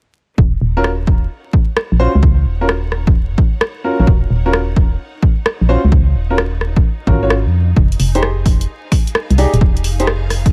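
A swung two-step UK garage groove at 130 BPM in Eb minor starts at 0.4 seconds with a punchy electronic kick up front alongside the bass and strings, joined at 0.8 seconds by an analog drum machine playing finger snaps, hi-hat and rim clicks, both drum parts carrying a tape-warm edge. A hollow, organ-like FM bass with a fast, decaying attack sits dark and forward beneath warm, boxy grand piano stabs soaked in tape echo, as the harmony moves from Ebm7 to Fm7 at 7.5 seconds. In the background, a lush bowed string section with clear vibrato fades in under sidechain pumping, while vinyl crackle and small-room ambience give this late-night, bouncy excerpt its texture.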